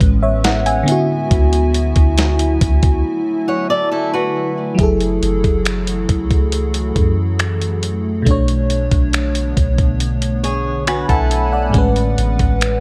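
Smooth and dreamy, this slow contemporary R&B passage moves at 69 BPM in a straight 4/4, cut from a longer piece. A lush, warbling FM electric piano with a soft pad layer and chorus sits up front, carrying the harmony from Amaj9 and D69 into F#m9 and Bm9 before settling back on Amaj9, while a glassy, ethereal FM pad sustains chords beneath it through ensemble chorus and its own reverb. A gritty, compressed sampler-style drum kit with a thumpy kick, medium-tuned snare, hi-hat and finger snaps drives the groove alongside a deep, round 808-style bass with a dark, decaying tone. A boxy fingerpicked acoustic guitar with a swing feel and digital delay plays arpeggios only from 3.5 to 4.8 seconds and again from 10.4 to 11.7 seconds, overlapping a break that runs from 3.0 to 4.8 seconds. The overall sound is dry, with little reverb, keeping the drums and keys close and intimate.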